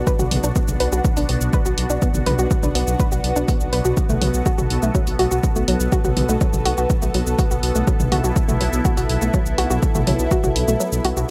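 Melodic techno at 123 BPM, melancholic and hypnotic, in which a lush, thick unison pad with chorus and phaser holds Bm then F#m/B chords over a dark, rumbling detuned saw bass on B1, while a woody, nasal wave-folded pluck spins arpeggios through subtle chorus and tape echo, all three parts pumping to the sidechain, and a punchy electronic kick plays alongside an analog drum machine's hi-hat, shaker and toms, both tape-warm and re-recorded in a small room, under light reverb, before a brief break at 10.8 seconds in this cut from a longer piece.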